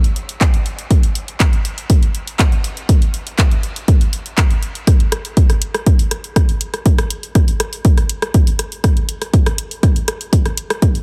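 A straight 4/4 pulse at 121 BPM drives this melancholic, cinematic techno fragment, cut from a longer piece, with a heavy, up-front electronic kick drum arriving at 0.4 s and sitting well above a layered techno drum kit of handclaps, hi-hat and rim click. Both drum parts carry the airy character of a large room, yet the overall sound stays dry and tightly squashed, like a heavily compressed radio broadcast. At 4.9 s a build-up begins and carries the groove through to the close.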